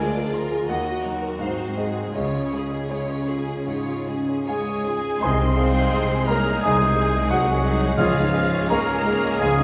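A passionate, lush romantic classical movement for piano and orchestra, cut from a longer piece, in which a clear, up-front grand piano carries the rubato melody over rich, bowed violin sections with vibrato, violas, cellos and very quiet mellow French horn chords, joined by a soft-edged oboe at 4.5 seconds and from 5.2 seconds by clarinet, an airy flute group, bassoon, trombones, trumpet stabs, tuba and a double bass section, before hard-mallet timpani enter at 8.0 seconds, the whole ensemble heard from further back in a wet stone room.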